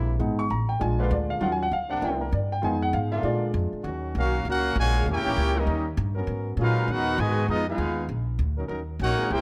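Close, detailed microphones and light reverb capture this sultry, swinging big band jazz cut from a longer piece in Eb minor at 198 BPM, where a soft-attack trombone section holds sustained chords over a woody pizzicato upright bass while an intimate concert grand piano, its action noise audible, takes a solo from 0.2 to 3.8 seconds, before a clear trumpet section with vibrato carries the melody from 4.2 seconds alongside a bright trombone section on a second line.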